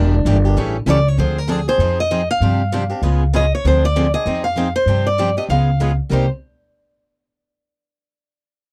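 Everything enters together at once: a fiery, virtuosic burst of acoustic string swing in C minor at 195 BPM, with a light swing on the eighth notes. Up front, a parlour-sized steel-string guitar picks the lead line with an aged, old-strings character. Behind it, a full-bodied dreadnought steel-string guitar and a bright, boxy swing-style guitar pick out the accompaniment. A dark, thumpy pizzicato upright bass on gut strings anchors the low end and sits prominently in the mix. The harmony cycles through minor seven flat five, minor seventh, suspended and dominant chords before settling on Cm7 at 6.1 seconds. The sound is dry and close, like a 1970s studio recording, in this short cut from a longer piece.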